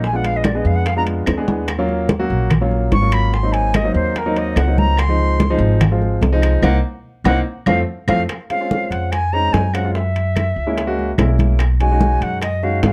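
An airy concert flute with vibrato and tongued notes leads this sultry, fiery Afro-Cuban jazz excerpt at 145 BPM, soloing up front through a plate reverb until 8.3 seconds over chords that move from Bb7b9 to B69. A woody, dark pizzicato upright bass and a deep-bassed grand piano sit forward beside it, while damped, high-tuned congas, tight bongos, ringing metal-shelled timbales and background claves fill the percussion. Drum fills land at 1.5 and 7.7 seconds, and a band accent from 6.6 seconds leads into a new section at 8.3 seconds. The production is dark and warm with light reverb.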